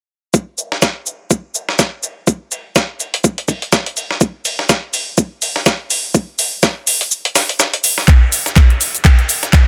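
Bouncy and aggressive, this bass house excerpt cut from a longer piece moves at 124 BPM in 4/4 with a 57% swing on the sixteenths, built entirely from three layered drum parts in a dry, up-front mix. An overdriven electronic kick drum knocks hard, its low end trimmed by a high-pass filter, and it drops out from 7.1 to 8.1 seconds. A gritty, compressed sampler-style kit adds hi-hat, shaker and a medium-tuned snare, with sidechain pumping on its hats and percussion and high-pass filtering on its hats, snare and percussion. From 0.6 seconds a big-room dance kit layers in metallic hats, cabasa and handclaps, its hats, snare and percussion shaped by low-pass filters. A filter sweep runs across the drums until 8.1 seconds, when a build-up and drum fill carry the groove to the close at 9.7 seconds.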